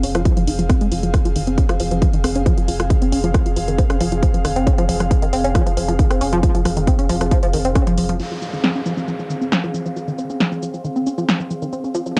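Up front sits a heavy, layered electronic kick drum, pounding from 0.3 to 7.8 seconds through this excerpt of relentless, dark peak-time techno at 136 BPM in straight 4/4, centred on F minor. Around it, a punchy analog drum machine supplies crash cymbal, hi-hat, rim click, shaker and an overdriven, dry snare, with filtered hats, cymbals and percussion and a touch of studio reverb. A tight, detuned sawtooth synth drives a sequenced riff between Eb3 and Db4, its plucky tone coloured by chorus, phaser, tube saturation, tape echo and sidechain pumping, while a filter sweeps over it during the opening 8.2 seconds. Beneath, a round sine sub bass holds F1 until 8.2 seconds, and an airy, breathy pad with a noise layer and moving notch drifts between C4 and F5, softly pumping under the beat. After 8.2 seconds the bass drops away and a faint electronic downlifter slides through the closing bars, all set in light reverb with the hazy grain of a home cassette recording.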